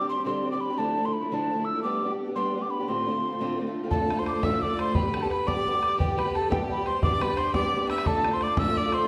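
Wild, dark and lively, this Celtic folk jig in 6/8 runs at 116 BPM in D dorian, with a hollow metal mid whistle carrying the melody, its breathy chiff and mellow tone sitting over a woody, up-front fingerpicked ladder-braced acoustic guitar with old strings. At 3.9 seconds a clear, intense fiddle joins with a light vibrato second line, and a tight, damped bodhran adds percussion. The whole cut from a longer piece rings out in the wet reverb of a recital hall.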